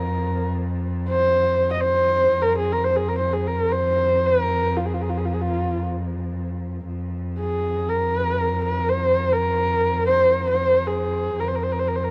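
In free time, this windswept, vast Mongolian folk piece in F yu mode, tuned to A4 = 444 Hz, sets a nasal, husky horsehead fiddle singing the melody with vibrato and portamento over a clear, smooth bowed cello drone on F2, both sounding together from 0.0 to 12.1 seconds through two passes of the same section, with light reverb and a dark production in this fragment of a longer work.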